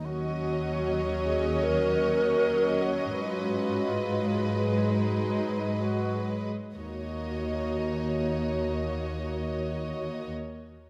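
Sorrowful and moving, this short cut from a longer cinematic film score unfolds in free time, slowing over its first 6.8 seconds as the harmony moves from Ebm7 to Abm7 and back. A distant, airy alto flute carries the melody in the background with vibrato, while a dark, bowed sul tasto violin section adds a smooth, intimate second line above a viola section that supplies soft, close accompaniment. An up-front, woody cello section anchors the bass, a barely audible thumb-plucked harp rings out arpeggios only until 3.2 seconds, and the ensemble sits in a moderate scoring-stage reverb.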